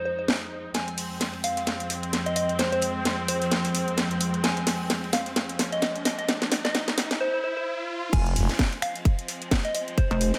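A tape-warm garage drum kit with a cracking snare, crash, finger snaps and hi-hat drives this swaggering, gritty bass house excerpt with a swung feel. A very quiet, dry 70s kit sits beneath, while lush, distant bowed strings hold sustained minor chords with sidechain pumping and a soft, pure synth bell carries the melody through chorus, phaser and delay. An electronic riser builds in the background from 4.6 seconds, and at 8.1 seconds the drop lands with a tight, up-front electronic kick, a thick, overdriven FM bass growl and, at 10.1 seconds, a heavy, detuned, saturated pluck wobble bass.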